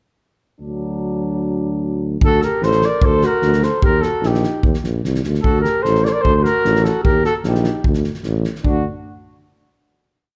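Balkan folk brass band piece at 149 BPM in 2/4, virtuosic and bittersweet in D phrygian dominant, where clear French horn and euphonium hold offbeat chord lines over a mellow, soft-attack tuba's root-and-fifth bass until 2.2 s, when a loose acoustic drum kit with a fat snare and punchy kick joins and, a moment later, a distant, roomy trumpet states hook-phrase melodies, shadowed mostly in thirds by a vibrato-tinged alto saxophone, moving between D and Eb before a final chord at 8.6 s, all under light reverb in a dark production.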